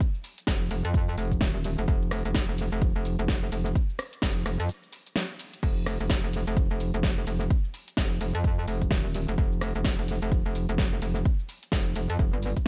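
Bass house with a swaggering, bouncy swing, built on a punchy, overdriven electronic kick up front and a big-room dance kit of crash, hi-hat, rim click, shaker and a huge snare, while a metallic, aggressive FM wobble bass with fast attack, chorus and tube saturation pumps against the sidechain from 0.5 seconds, all kept dry, with a brief break at 4.7 seconds in this cut from a longer piece.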